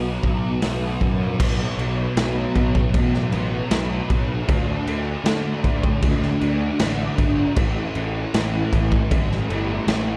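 A dark, warm studio production with studio reverb frames this brief cut from a longer shoegaze and dream pop rock piece, moving at an unhurried 78 BPM in a straight 4/4. The mood is dreamy and melancholic. Up front, a thick, double-tracked fuzz guitar drives the riff between A2 and D4, its distortion thickened by ensemble chorus. Beneath it, a picked electric bass, running direct and amped with overdriven fuzz, anchors the low end from G1 to D3. The raw garage drum kit enters at 0.2 s, sitting close in a small, pumping room, with a punchy kick, a medium-tuned snare, hi-hat and crash, dark cymbals and a gritty, saturated tone with a rolled-off top. The harmony moves from B5 to D5 at 4.5 seconds and settles on A5 at 7.6 seconds, with the arrangement shifting into a new section after 1.4 seconds.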